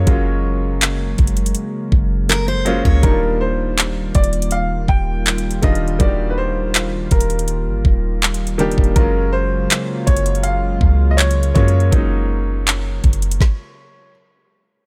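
A dry, close-sounding clip of dreamy, tender contemporary R&B at 81 BPM in 4/4, moving between Gbmaj9 and Ebmaj9 chords. Up-front electronic drums with a knocking kick, woody snare, metallic hi-hats and handclaps sit over a deep, boomy sine-tone 808 bass. A natural-sounding grand piano with short sustain plays the accompaniment, and a mellow sawtooth analog pad with chorus holds slow-attack chords. A boxy baby grand piano carries the melody through a delay, and a full-bodied picked steel-string acoustic guitar adds brief arpeggios at 2.3 seconds. The bass, pad and accompanying piano stop at 13.4 seconds and the drums at 13.6, and the melody piano rings on until 14.1 seconds.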